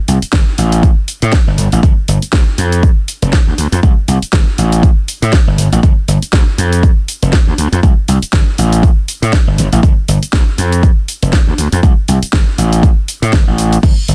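A gritty, overdriven slap bass and a house drum kit open this feel-good, funky slice of filtered disco house, the bass bright, amped and up front with sidechain pumping while the kit offers a cracking snare, bright hi-hat, shaker and crash cymbal. A punchy, layered electronic kick joins at 0.3 seconds, adding its own overdriven grit to a swung groove that holds as a single driving drop. The mix is dry, dense and heavily limited in a modern style.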